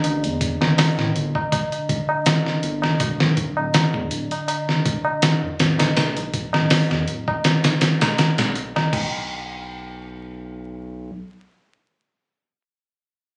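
A gritty, compressed sampler-style drum kit with a thumpy kick and fat snare sits up front in this brooding, dark trip hop fragment at 81 BPM with a light swing, alongside a ringing, high-tuned tabla, a round, deep analog bass, and a detuned, chorused analog pad that murmurs in the background under a filter sweep until 8.9 seconds, while the drums drop out at 9.1 seconds and the bass carries on alone to 11.1 seconds, all wrapped in vinyl crackle and the hazy, roomy sound of a phone recording.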